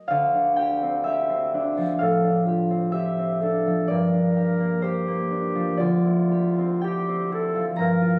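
Hazy and mysterious, this short excerpt from a longer impressionist piece for clarinet and harp drifts in D minor at a slow 63 BPM in 4/4, its rubato feel letting the pulse breathe freely. The concert harp opens alone at 0.0 seconds as an up-front, fingerpicked accompaniment, its acoustic tone mellow and ringing across a span from D2 to Bb5. At 2.0 seconds the clarinet enters with a warm, classical-style solo melody that stays within a narrow range from F4 to Bb4, sitting a little behind the harp. Beneath them the harmony moves from Dm11 to Gm7 and back to Dm11, and both instruments carry on together until the cut at 8.2 seconds. The sound has the intimacy of a phone capturing the room, softened with light studio reverb and compression.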